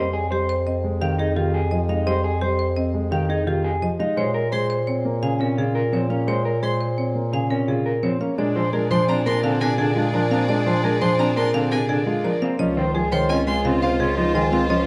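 This excerpt of minimalist classical pattern music in 6/4 feels urgent yet meditative. A woody, bright marimba carries the melody over mellow grand piano accompaniment, slightly broken-up electric guitar arpeggios and an up-front, warm bass clarinet line, with a rich, distant solo violin adding its own arpeggios from 4.5 s. From 8.4 s a classical-style clarinet joins with a second line and a smooth, close chamber violin section holds sustained chords, all heard through close, detailed microphones and light reverb.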